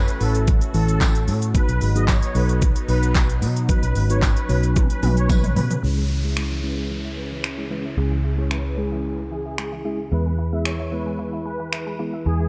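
Dance-pop in a euphoric, upbeat mood, this excerpt opens on a drop where knocking, overdriven pop drums and a round, punchy muted electric bass sit up front beneath a pumping, detuned supersaw swell carrying the melody, a resonant sweeping pad, a mellow tine electric piano and a jingly tambourine that plays from 1.0 to 5.4 s, and then after a drum fill a woody, bright synth pluck joins with arpeggios at 5.8 s alongside an electronic downlifter, all within a dark production.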